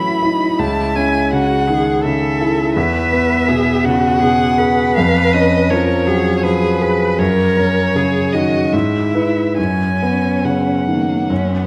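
A tender, slow romantic movement for piano trio opens with all three players sounding together from the very start, in an unhurried triple time that breathes freely with rubato. The violin carries the melody up front with a smooth, even bowed tone and vibrato, while the cello sings a focused second line close beneath it; both strings share a rich, singing quality. The grand piano supplies a clear, intimate accompaniment reaching down into its low register, sitting prominently in the balance, its natural sound carrying audible action noise. The harmony drifts from A major through E and a C#7 chord toward F#, settling on an F#sus4 at 9.6 seconds before this excerpt, cut from a longer piece, breaks off at 11.7 seconds. A generous recital hall reverb surrounds the trio, giving the performance a lingering, spacious glow.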